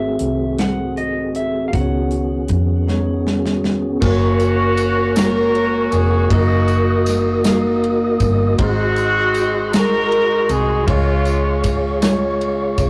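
Soulful and hopeful, this slow gospel fragment sways in 6/8 at 52 BPM in F# major, with a clean lap steel sliding a brief melody until 3.2 seconds over a bell-like tine electric piano, a mellow, flute-like tonewheel organ with fast rotary speaker and key click, a dark, round hollow-body bass, and a small-room acoustic drum kit with a tight kick. After a drum fill at 2.9 seconds, a vintage, jazz-style horn section takes the melody up front at 4.0 seconds with light vibrato and tape echo, while a jingly tambourine sits in the background. The rough rehearsal-room recording has a short booth ambience and warm saturation as the chords move from G#7b9 and C#9sus4 toward a resolution on C#.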